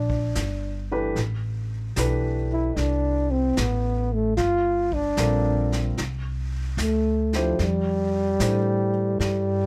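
Tender and intimate, this short jazz ballad excerpt at 75 BPM in swung 4/4 features a breathy, mellow trombone with light vibrato carrying the melody up front over woody pizzicato upright bass, while a distant, roomy brush kit with a punchy kick sits further back and a grand piano with audible action noise joins at 0.9 s, as the harmony moves from Bb through Am9, Gm7 and C69 to Fmaj9 in a dry space.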